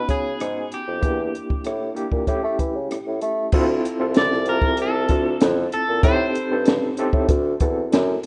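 This rough home demo mix has nothing above 10.3 kHz, light reverb and a sense of studio ambience, and it is cut from a longer piece of lush 1970s-style soul with a smooth, cinematic mood in a straight four. A twangy, picked electric guitar sits at the edge of break-up and carries the melody with subtle chorus and slapback echo until 6.6 seconds. Beneath it, an overdriven reed electric piano plays the accompaniment through a combo amp, its barky, gritty tone pulsing with fast tremolo. A dark bassoon with light vibrato takes the bass line in a classical style, sounding distant and roomy yet up front. A compact acoustic cocktail kit enters at 0.1 seconds, with a high-tuned snare, tight kick, rim clicks, hi-hat and crash in a small room. The harmony opens on B and then works through Em7b5 and A7 before the second section arrives at 3.5 seconds with Dm7, Am7b5 and D7.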